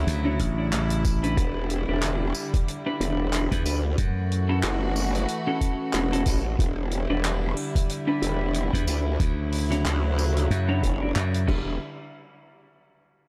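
A growling, saturated bass wobbles up front through this gritty, playful glitch hop drop, its formant-filtered unison tone given extra shimmer by chorus. Beside it, a punchy, bright slap bass adds growly, amped lines, falling away at 4.6 seconds and returning at 8.7. A compressed, pitched-down electronic kick thumps hard with the sound of a large room, while a dry acoustic soul kit with a rolled-off top fills in snare, hi-hat, handclaps, tambourine and crash over a swung 16th-note feel. A dark, scooped clean electric guitar plays fingered stabs through analog chorus and tape echo, pumping against the beat, and a close chamber string section holds reedy, gut-string chords with light vibrato, pumping likewise beneath it all. Light reverb surrounds the mix as the harmony moves from Dmaj9 through Em7 and F#m7 and back, before the parts give way at 11.8 seconds in this cut from a longer piece.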